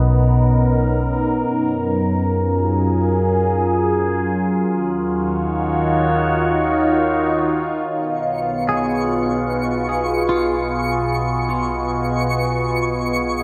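A mellow, detuned wavetable pad sits up front in this peaceful ambient excerpt, morphing and warbling through phaser and reverb over sustained Bmaj9, F#maj9 and D#m7 chords, while a round, deep sine sub bass holds beneath it; a filter sweep moves across the pad and the sub bass fades over the opening 7.9 seconds. The harmony then turns to C#9/B, and at 8.4 seconds a sparkling granular texture adds an octave-up shimmer; at 8.7 seconds a bright, twangy clean electric guitar plays picked, compressed arpeggios through phaser and analog delay. A wet plate reverb gives the echo-heavy mix a long tail.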